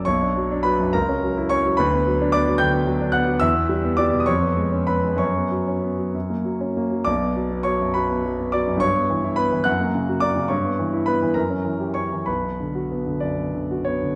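A solo concert grand piano opens this short passage from a longer romantic character piece in B minor, unfolding in a rubato 6/8 at roughly 62-75 BPM with a bittersweet yet stormy mood. The instrument sounds natural and up front, with a deep bass that reaches down to B1 and a top reaching G6, set in a wet recital hall reverb within a dark, warm production. The harmony moves from Bm through Em, C#7/E# and a suspended F# before an F#7b9 at 11.4 seconds leads back to Bm at 12.3 seconds, and the playing continues to 14.2 seconds.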